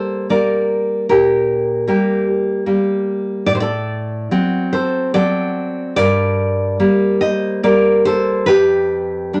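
Intimate and wistful, this short fragment of a romantic piece for solo classical guitar moves in a gentle three-beat metre, with uneven beats and a free, rubato feel that lets each phrase breathe. A single fingerpicked nylon-string guitar carries the whole 9.4 seconds, ranging from its low bass strings up into a singing upper register. Its tone is full-bodied and deep, placed up front, and touches of finger squeak give the playing a close, human presence. The harmony settles on G minor, passes through Gm/Bb and D7/A, returns home at 6.0 s, and then turns toward G7/F as the fragment breaks off. A moderate studio reverb adds a modest sense of room around the guitar.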